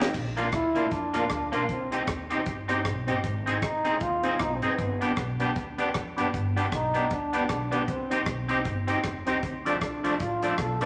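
A mischievous, driving ska groove at 155 BPM in C harmonic minor opens with a bright, twangy electric guitar on the edge of break-up, its picked accompaniment up front and trailed by tape echo, alongside fat, percussive tonewheel organ stabs with key click, chorus vibrato and a slow rotary speaker. Beneath them a woody pizzicato upright bass and a dry reggae kit with a high-tuned snare, tight kick, rim clicks, hi-hat and crash keep the swung eighths moving. From 0.5 seconds a warm, distant trombone carries the melody with vibrato over a Bb, Cm, Ab and G progression, all set in a roomy studio reverb in this short cut from a longer piece.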